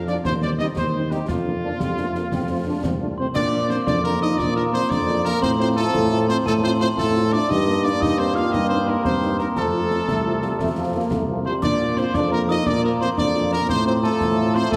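A military-style march for wind band in a festive, rousing mood, this passage moves at 116 BPM in 6/8 with a straight feel, in Bb major, and is cut from a longer piece. A bright trumpet section carries the melody with light vibrato, supported by a mellow tuba on the bass line, a very quiet French horn section with a smooth top in the accompaniment, and a distant, roomy trombone section holding sustained chords. Concert snare drum, concert bass drum and clash cymbals with a dark cymbal tone keep the march going from the start. At 3.2 s a dark euphonium joins in the background alongside a glockenspiel played with rubber mallets, its soft, bell-like ringing floating high above the band. The harmony moves through chords such as Cm/Eb, Bb, Eb/G and F before settling back on F/A. A concert hall reverb surrounds the band, while a heavily compressed radio sound gives the whole recording a broadcast quality.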